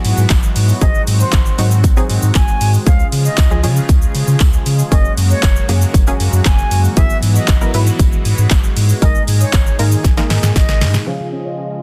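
Dance-pop at 117 BPM in Db major, summery and carefree, this short cut from a longer piece opens straight into a drop driven by an up-front house drum kit with punchy kick, snare, handclaps, hi-hat and shaker, a very quiet jingly tambourine, a round sine sub bass, pumping detuned sawtooth chord stabs and an airy filtered supersaw swell, while an airy silver concert flute with vibrato carries the melody through dub echo from 0.8 seconds, a drum fill arrives at 10.0 seconds, and a tight sequenced synth arpeggio slips in at 11.1 seconds as the dense, dry, heavily limited mix lands on Db.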